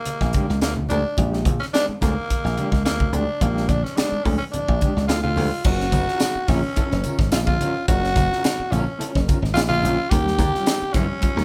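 Recorded as a band playing live in one room with moderate studio ambience, this strutting, energetic funk excerpt puts a growling, breathy tenor saxophone melody up front over a dry, foam-muted thumbed slap bass and a crisp fusion drum kit with a high-tuned snare and punchy kick, while a mellow, dark electric guitar with tremolo and bright, damped congas sit in the background and a jingly, very quiet tambourine joins at 5.6 s.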